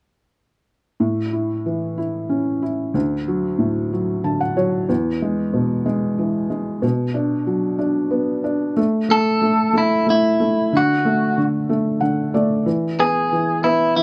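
A gentle, swaying 6/8 lilt carries this heartfelt pop fragment, cut from a longer piece, as a felt-muted upright piano lays down mellow, intimate accompaniment with audible action noise, a boxy short sustain and a slapback echo, adding brief fills along the way. At 9.1 seconds a clean electric guitar enters up front with a bright, twangy, compressed melody that stays in a narrow range. Light reverb frames the two parts in an open outdoor setting.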